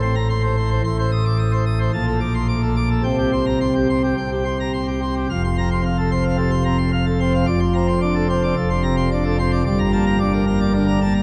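This classical organ toccata is majestic and jubilant, a brief fragment cut from a longer piece in a straight 4/4. A single pipe organ plays solo for the full 11.2 seconds, sounding its plenum with mixtures in a full, brilliant, baroque voicing that spans from a deep F1 to a high Eb6. The organ sits up front in the mix, while a cathedral reverb with a 6.1-second decay surrounds it and lends the production a dark, warm glow. The opening passage moves through Am, Adim, Bbmaj7 and an open C5, and at 5.3 seconds a new section settles onto F before moving to Dm7/F and arriving on Gm.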